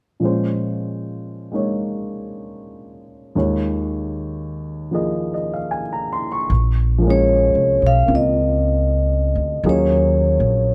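Jazz ballad in Bb minor at a slow 76 BPM in swung 4/4, melancholic and wistful, tuned slightly flat to A4 = 435 Hz and drifting through Bbm9, Eb9sus4 and Ebm11 chords. A warm grand piano with short sustain opens the accompaniment at 0.2 seconds, then a woody pizzicato upright bass enters at 6.5 seconds, and a metallic, ringing vibraphone played with medium mallets and its motor off takes the melody from 7.1 seconds. All three sit up front in close, detailed sound with light reverb, in this brief passage cut from a longer piece.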